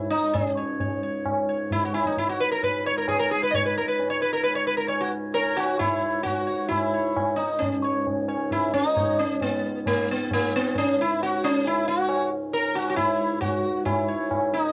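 This is a Hindustani classical piece in raga Bageshri on C#, with a longing, introspective mood, cut from a longer performance. It moves in a straight 4/4 at about 133 BPM and gradually speeds up across its 14.7 seconds, with the tuning set slightly under standard pitch at A4 = 439 Hz. An up-front, plectrum-plucked sitar carries the melody, its bright, buzzing tone ringing with shimmering sympathetic strings yet staying round at the core. Beneath it, a reedy, breathing pedal harmonium holds a low drone with a vintage, band-limited character, while a low-tuned tabla entering at 0.3 seconds sounds distant and set in a large room, its strokes giving a short ring. The music shifts into a new section at 7.6 seconds, and the whole was recorded at home on cassette with moderate studio reverb.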